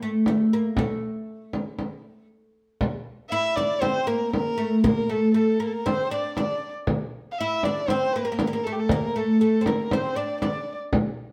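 This Arabic maqam ensemble piece in A maqam kurd moves at a steady 118 BPM in a straight 4/4, carrying a melancholic, soulful mood through a short section cut from a longer performance. The oud opens the melody at 0.0 seconds, its plectrum-plucked double strings giving a warm, woody, fretless voice that sits up front in the low-middle register. A frame drum joins almost at once with a large, deep sound played with soft hands, also close and present. After a brief stop at 2.3 seconds, the music moves into a new section, and at 3.3 seconds a dark, boxy bowed violin adds a second line in a higher register, its light vibrato coming from a single player. The trio plays live together in a stone room whose wet reverb adds a one-second tail to the sound.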